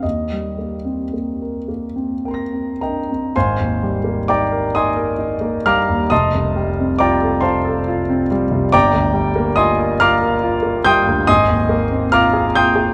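Close, detailed microphones in a moderately reverberant concert hall capture a clear, intimate grand piano with a natural, up-front sound and audible action noise, in this serene, hazy fragment of impressionist solo piano in a rubato 6/8, where a high Eb6 opens before a new passage begins at 3.3 seconds and drifts through Abmaj9, Fadd9, Gm7 and Ab69 harmonies spanning from a deep F1 to a high Bb6 until the piano stops at 12.9 seconds.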